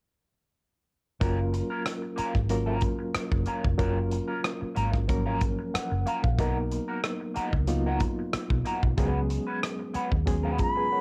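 At 1.2 seconds a barky, lightly overdriven reed electric piano with fast tremolo enters up front alongside a picked, slightly broken-up wah guitar riff, a round, foam-muted fingered bass and an acoustic drum kit of punchy kick, hi-hat and rim click, settling into smooth, lush 1970s-style soul at 93 BPM in F# major with a gentle sixteenth-note swing. The piano adds fills around 5.4 and 10.3 seconds as the harmony moves from F#maj7 to Bmaj7 and then C#7sus4. At 10.6 seconds a pure, soft-attacked concert flute with vibrato touches a single B5 just before the cut, all captured dry on a home cassette recording.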